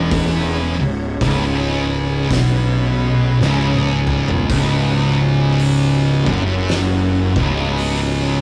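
Sludgy and heavy, this short stretch of stoner and doom metal moves in a swung 4/4 on a single minor chord. Two thick fuzz guitars carry the riff, one up front and the other darker, over a growly, punchy fingered bass with overdrive and tube saturation, while a smooth, clean tonewheel organ holds sustained chords in the background through a slow rotary speaker and chorus vibrato. An oversized, low-tuned acoustic kit with a fat snare, dark cymbals and a bright, pumping stone-room sound enters at 0.1 s and plays a fill from 3.4 to 4.5 s, all captured in a rough rehearsal-room recording with small-room reverb and saturation.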